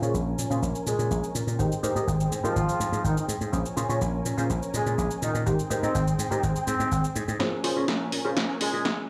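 A bright, foam-muted thumbed slap bass sits up front in this groovy, funky filtered disco house excerpt at 124 BPM in Bb dorian, joined by a chorused sawtooth polysynth comp, sustained bowed chords from a close violin section, an overdriven analog drum machine with a punchy snare, hi-hat and shaker, and a horn section with octave doubling and analog delay that carries the melody from 0.9 seconds, while filter sweeps run throughout and a drum fill builds from 7.4 seconds over Bbm7 and Abmaj7 harmony.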